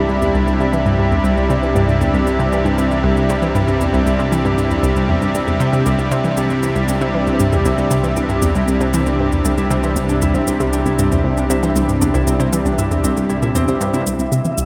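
A thick, detuned unison pad sits up front, holding chorused Cadd9 chords over this cosmic, expansive piece of ambient, sequencer-driven space music at 117 BPM in 4/4, cut from a longer work. Beneath it, a round, bright analog pluck riff with chorus and analog delay, a deep sine sub bass, and a ringing fingerpicked concert harp arpeggiating in the background all fill a vast, echoing cathedral reverb, while the harp and the dry, analog-sounding cabasa and congas both fade in over the first 14.1 seconds. At 14.1 seconds an airy, dark wind-like tuned noise texture breathes in on a high E.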